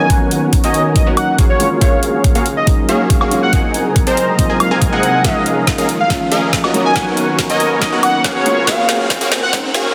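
A half-time 4/4 groove at 140 BPM drives this playful, lush future bass passage, cut from a longer piece, with a knocking electronic kick up front and a trap kit of woody snare, metallic hi-hats and woodblock, building into a drum fill from 5.2 seconds. A punchy, detuned supersaw stab plays the riff with a filter pluck and moving notch. A velvety synth lead with vibrato and a sub octave carries the melody between C5 and Ab5, over a soft, felt-muted upright piano whose audible action noise and 12-bit sampler grit lend an intimate, dark character. An ethereal, airy pad sustains chords in the background through ensemble chorus and built-in reverb, while a deep sine 808-style bass sits barely audible beneath, and a very quiet riser enters at 1.5 seconds. The whole stretch is a build-up, with filter sweeps on the supersaw and pad, sidechain pumping on the lead, piano, pad and stab, and lush chords such as Cbmaj7, Ab9/C and Db69 bathed in a hall reverb under a dense, heavily limited modern master.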